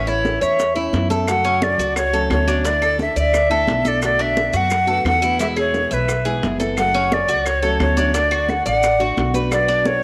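Sunny and warm, this Cuban son and guajira cut from a longer piece moves at 175 BPM in 4/4, with a breathy, close-miked jazz flute up front carrying an expressive, tongued melody with vibrato over chords moving from A through F#m, Dsus2, Bm7 and E. Beside it, a metallic, double-strung Cuban tres picks arpeggios, while a bright, fingerpicked nylon-string guitar supplies classical-style accompaniment and a dark, thumpy upright bass plays pizzicato on gut strings. High-tuned congas struck with hard hands, tight, saturated bongos and grainy maracas sit in the background from 0.1 seconds, with very quiet woody claves entering at 1.3 seconds, all set in a moderate echo-chamber reverb.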